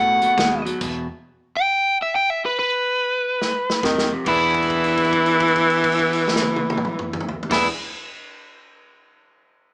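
Electric blues shuffle at 139 BPM in E mixolydian, a gritty, soulful clip cut from a longer piece and swung on the eighth notes. A crunchy, overdriven lead guitar sits up front carrying the melody throughout, while a second guitar at the edge of break-up, slightly broken-up and compressed, plays the riff alongside a dark, round, foam-muted bass tucked in the background. Both of those drop out for a stop from 0.8 to 3.8 seconds, returning as a drum fill on the natural, punchy country kit leads into the next section. From 3.8 seconds a breathy tenor saxophone joins up front with a jazz-style second line full of vibrato and scooped notes, and a long note is held from 4.3 seconds as the chords move to E7. The band sounds like it is playing live in one room with a moderate large studio reverb, yet the whole mix has a small-speaker quality.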